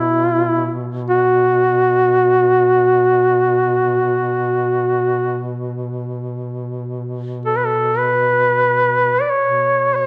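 Dark production and a moderate stage reverb frame this solemn, mournful Caucasian folk lament in free time, where an up-front duduk sings a warm, smooth-topped melody from E4 to D5 with vibrato and scooped notes while a second, mellow duduk holds a quieter B2 drone beneath it through all 10.1 seconds of this fragment of a longer piece.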